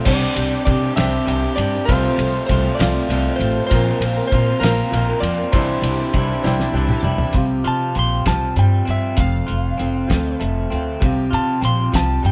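Folk rock with a heartland rock lean, this cut from a longer piece rolls along in a straight 6/8 with a jangly, open-road mood. A picked twelve-string acoustic guitar shimmers in octave-doubled layers in the background. An electric guitar through a small old amp plays a slightly broken-up, lo-fi riff bathed in spring reverb. A bright concert grand piano adds worn, brilliant accompaniment until 7.0 seconds, and a grainy tube shaker sits close but in the background until 6.8 seconds. Underneath, a woody, thumpy upright bass on gut strings sits up front beside a cloth-damped, thuddy drum kit with a fat snare, tight kick and dark cymbals, which plays a fill leading into the second section. From 7.4 seconds a dark, compressed electric slide guitar takes a solo over Csus4 and F chords, and the whole band sounds like it is playing live together in one room with light reverb.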